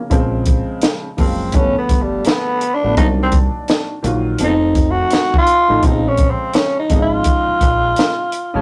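Jazz-hop with a cool, smoky mood and a swung groove, set in a rough rehearsal-room sound with moderate reverb and cut from a longer piece. A worn, woody upright piano with audible action noise and a slightly detuned ring plays chords over a deep, round dub bass and a compact, dry cocktail kit with a high-tuned snare and punchy kick sitting up front. At 1.2 seconds a growling tenor saxophone takes the lead solo, breathy and raspy with subtone, vibrato and scooped notes, moving through a minor progression that returns to Bbm7 at 5.8 seconds.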